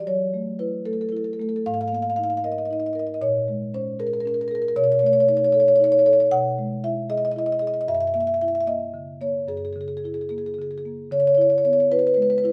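A solo marimba played with soft mallets opens on an F#m7 chord, its woody, round rosewood tone sitting up front in a contemporary classical passage taken from a longer work, reflective and hypnotic at a rubato 76 BPM in 6/8. The harmony drifts through sus2, minor seventh and ninth colours, settling into C# dorian from 4.8 s and arriving on C#m7 at 11.1 s as a new section begins. A moderate stone-room reverb gives the mellow bars a gentle halo, and the instrument is tuned slightly high, to A4 = 445 Hz.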